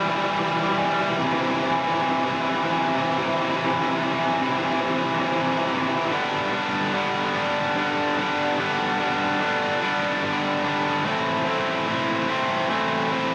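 A tight, distorted electric guitar carries this short rock excerpt entirely on its own, its bright, picked tone double-tracked and placed up front, with analog delay trailing behind it. The mood is euphoric and soaring, moving in 6/8 at 49 BPM counted in dotted quarters, with a straight feel in G major. The guitar ranges from G2 to E4, and the opening section from 0.0 to 6.1 s works as a build-up over Em and C. At 6.1 s a second section arrives, settling on G before shifting to Am at 11.1 s. Light reverb gives the guitar a touch of space, and the fragment is cut from a longer piece, ending at 13.3 s.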